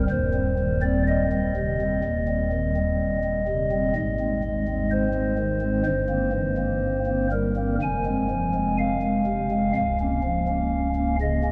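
A pipe organ on a stopped flute register carries this short classical excerpt alone, its soft, hollow tone set up front with a gentle chiff at the start of each note. The chorale-style writing has a baroque voicing and moves in a slow, flexible rubato over a steady four-beat metre, spanning from Db1 in the deep bass up to Ab5. The mood is dark and grave, and the harmony turns toward a new centre around 4.0 s with an Ab chord, then settles on Fm at 7.8 s before closing on Bbm over Db. A long, wet cathedral reverb lets every chord bloom and hang in the space, giving the mellow flute stops a deep, solemn halo. The production is dark overall, and the passage is cut from a longer piece, ending at 11.5 s.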